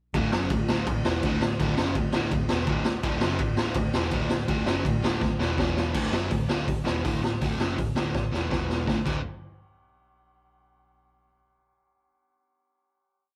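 A gritty, up-front garage drum kit with a punchy kick and a two-step groove opens this rebellious, energetic punk rock piece alongside a growly, driving eighth-note bass in the background that doubles the crunchy, double-tracked power-chord guitar riff, all played live in one room with light reverb and a faint mains hum, as drum fills at 5.2 and 8.1 seconds lead into the outro and a final chord struck at 8.9 seconds.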